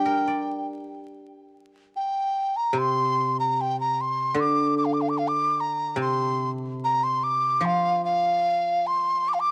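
Chinese traditional chamber music, graceful and tender, moves in a loose, rubato 2/4 at about 73 BPM in the G yu mode. This fragment of a longer piece has a large dizi carrying the melody up front, its bamboo tone mellow and hollow with an airy buzzing membrane, vibrato and a crisp attack. Beside it a guzheng, plucked with fingerpicks and colored by a cassette-tape effect, gives a bright, silvery, ringing accompaniment, both parts sounding throughout in a booth with moderate ambience on a homemade cassette recording flecked with vinyl crackle, with a new passage beginning at 1.1 seconds.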